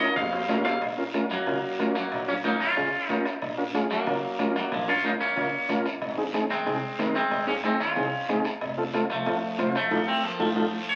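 A straight, driving cumbia groove in 4/4 opens with a drum fill, with a raspy, close guiro scraping over a soft-beater bombo, bright high-tuned congas and distant, ringing timbales and cowbell set very quietly in a large room. Up front, a clean, picked electric guitar carries the passionate melody with a scooped, twangy tone bathed in spring reverb. Beside it, a vintage combo organ supplies reedy accompaniment, heavy with vibrato. The pizzicato upright bass, with its woody steel-string sound, sits in the background alongside the damped congas and bombo. The band hits an accent from 9.9 seconds as a final fill closes this short cut from a longer piece, all heard through a wet club reverb and the crackle of a very old 78 rpm record.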